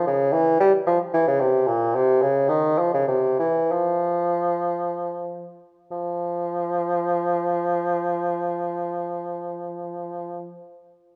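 A mellow solo bassoon with light vibrato plays a grave, flowing baroque-style classical fantasia in 3/4, moving freely between 76 and 114 BPM and slowing from 1.1 to 5.9 seconds before a new section begins, ranging from Bb2 to G3 at A4 = 438 Hz, its roomy tone set up front in a recital hall with a 1.8-second reverb tail, in a 10.5-second passage cut from a longer piece.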